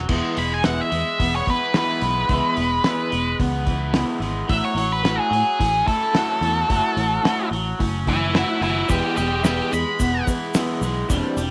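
Jangly and wistful, this indie rock excerpt moves at 109 BPM in a straight 4/4 feel in E major, cut from a longer piece. An overdriven, picked electric guitar and a twangy, slightly broken-up second guitar through a small old amp with analog chorus carry the riffs, over a fingered electric bass with a direct, amped tone and a cloth-damped drum kit that sounds dry and thuddy, with dark cymbals, a fat snare and a tight kick. From 0.4 seconds an up-front octave-fuzz lead guitar plays the melody as a solo, its dark, distorted tone trailed by tape echo, until 10.3 seconds. The harmony shifts from E to A6 and back to E. At 8.9 seconds a very quiet, lush unison pad of detuned sawtooth and square waves with a slow attack joins in, along with a grainy egg shaker in the background. The whole mix sits in light reverb.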